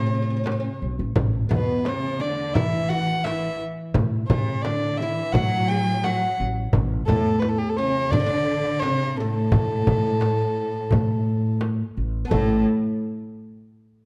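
A straight, even 4/4 pulse drives this passionate, festive Arabic maqam ensemble piece, cut from a longer performance. A single violin carries the melody up front, its gut-string tone nasal and reedy with light vibrato and an airy bow, giving it a boxy, period-style character. Beneath it, a bright symphonic cello section plays a lush, focused second line with vibrato. A fretless oud adds a woody, plectrum-plucked voice with double strings, and a pizzicato upright bass supplies a thumpy low end. In the background, a crisp metal-shell darbuka played with hard hands, compressed and saturated, joins at 0.1 s, and a small frame drum, close and dry, follows at 0.5 s. A moderate recital hall reverb surrounds the ensemble in a dark production, and a new section begins at 12.3 s just before the recording ends.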